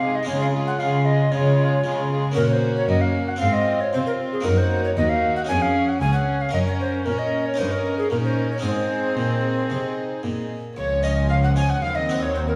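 Classical baroque-style concerto movement with a dramatic, driving mood, cut from a longer piece, where an airy, mellow tenor recorder with chiff leads up front over two gut-string violin sections in the background, one carrying the melody and a darker one the second line, a distant viola section and a brilliant plucked harpsichord in accompaniment, a rich, nasal cello section anchoring the bass, and a double bass section joining at 10.8 seconds, all wrapped in a wet recital-hall reverb.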